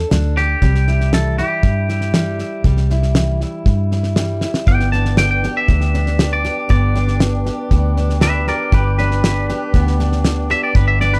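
A dark, dry production frames this heartfelt, sunny honky-tonk and classic country piece in G major at 118 BPM, where a twangy, compressed electric guitar carries the melody over picked dreadnought acoustic guitar, a round, foam-muted fingered bass and a damped 70s kit with fat snare and tight kick, until a drum fill at 4.4 seconds opens a clean electric guitar solo at 4.7 seconds as a hollow, mellow small flute group enters with sustained chords.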